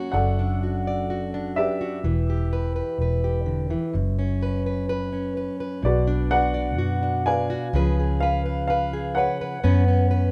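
A slow, straight four-beat pulse carries this short acoustic folk-pop ballad clip, which feels reflective and intimate. An upright piano sings the melody up front, its woody, slightly detuned tone and audible action noise lending a close, homely character. Beneath it, a fingerpicked steel-string jumbo guitar on old strings gives full-bodied accompaniment. A foam-muted electric bass enters at 0.1 s with a dark, round, amped tone, sitting up front alongside the other two. The harmony moves from D/F# through Em, F#sus4, Bm and C#7 before landing again on F#sus4 at 9.6 s, all set in a light reverb.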